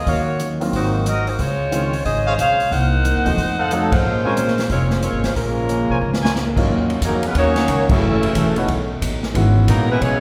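Swung eighths at 181 BPM drive this dramatic big band swing piece in Bb minor, turning to Eb minor at 6.7 s, as an up-front saxophone section carries the melody over woody pizzicato upright bass, a drum kit with dark cymbals and a punchy kick, a bright picked acoustic guitar in the background and an open baby grand piano, while a mellow trumpet section adds tight stabs at 0.1 s and again from 2.3 s and a brilliant trombone section enters with a second line at 5.4 s, set in the reverberant space of a recital hall.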